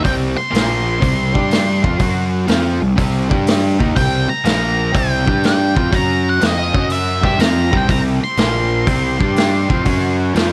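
A gritty, raunchy slab of blues rock with a southern rock lean, this excerpt has a saturated, up-front sound under a light reverb, rolling along at 122 BPM in 4/4 with a heavy swing on the eighth notes. A dark, double-tracked overdriven guitar pounds out the compressed riff up front. A growly, punchy fuzz bass sits beneath it, and a vintage drum kit drives hi-hat, tight kick and a medium-tuned snare with a mid-forward, rolled-off top. Over this an octave-fuzz lead guitar carries the melody through wah and distortion, high in its register. At 7.9 seconds a thick, overdriven tonewheel organ slips in low in the mix with sustained chords through a slow rotary speaker. The harmony circles power chords on C, Bb, G, F and F#, with a passing Cmadd11/F, giving the whole groove a raw, swaggering weight.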